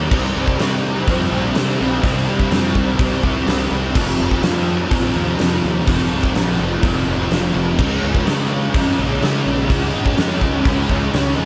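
Shoegaze-leaning dream pop rock with a dreamy, hazy mood, this 11.5-second cut from a longer piece sets a thick, double-tracked fuzz guitar riff up front, treated with distortion and ensemble chorus, over a round, overdriven fingered electric bass and a huge arena drum kit with bright cymbals, a punchy kick and a pumping hall sound, all soaked in a moderate, huge ambient reverb as the chords move from C5 to F5 to Db.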